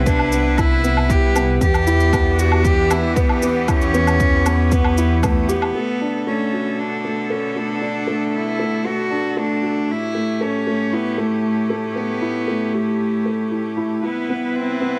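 A moderate recital-hall reverb wraps this intimate, cinematic piano and strings electronica in B minor, moving at 116 BPM in a straight 4/4. Up front, a felt-muted upright piano plays a soft, thick-felted riff through digital delay, while a close, reedy cello with a gut-string, period-style tone carries the bowed melody, also echoed by digital delay. Behind them, a distant, intense string quartet holds bright chords with vibrato, breathing with sidechain pumping. For the first few seconds, a dark, detuned sawtooth bass rumbles and beats under tube saturation and its own sidechain pumping, joined from 0.1 s by an overdriven deep electronic kick and a low-pass-filtered layer of shaker, woodblock and crash cymbal re-recorded in a small room. The beat and bass drop away by about 5.9 s, leaving the piano and strings to move from Bm7 to A7 and back to Cmaj7 in this passage cut from a longer piece.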